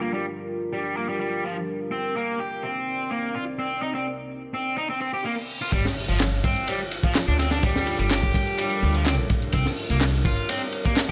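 A compact, small-room sound with light reverb frames this energetic, funky breakbeat excerpt, which runs in a straight 4/4 and moves between minor seventh chords. It opens with a deep, moody pad of detuned, warbling sawtooth voices with a sub octave, carrying chorus, its own reverb, vintage 12-bit sampler grit and sidechain pumping, while an up-front fuzz guitar plays a bright, compressed, distorted riff through tube saturation, a low-pass filter and tape echo. A reverse cymbal rises in the background from 5.1 seconds and lands on an impact as the drop arrives at 5.7 seconds. There a crunchy breakbeat kit enters up front, with a punchy kick, a high-tuned snare, dark cymbals and a gritty, saturated, rolled-off top, layered with an overdriven house kit of handclaps and bright hi-hats. A woody, thumpy pizzicato upright bass with gut strings joins at the same moment, anchoring the low end until the cut at 11.1 seconds.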